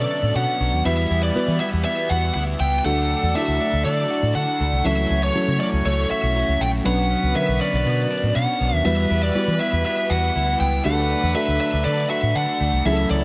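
In a straight 4/4 at 120 BPM, this urgent, dramatic pop excerpt cycles through Bmadd9, Emadd9, D and F#m7/C# as a round, punchy, foam-muted fingered bass sits up front beside a biting, overdriven lead guitar melody trailed by digital delay, while a cranked stack guitar thickened with ensemble chorus, a mellow, warbling FM electric piano, a compressed clean direct guitar riff tucked in the background, and clear horn stabs echoing through digital delay fill out the arrangement in light reverb.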